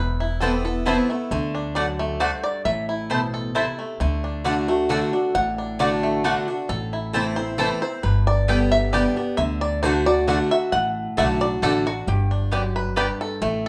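A twangy, fingerpicked five-string banjo takes a solo from the first moment of this lonesome, rustic bluegrass excerpt in 3/4, sitting up front beside a bright, freshly strung archtop guitar that picks the accompaniment. Underneath, a growly, thumpy upright bass holds down the low end, and from 0.4 seconds a woody mandolin adds picked double-string stabs until 13.1 seconds. A moderate large-studio reverb gives the group a roomy, open sound.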